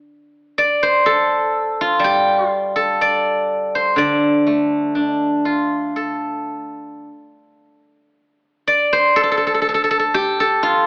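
A silvery steel-string zither, played with fingerpicks and placed up front, carries this short cut from a longer piece of Chinese traditional solo plucked-string music, entering at 0.6 s and ringing through to 10.9 s over a range from D3 to D5. The mood is longing and elegant, moving in a slow, rubato 4/4 around 52-62 BPM in the D yu mode, with a new section arriving at 8.2 s. Light reverb and an AM radio sound color the recording.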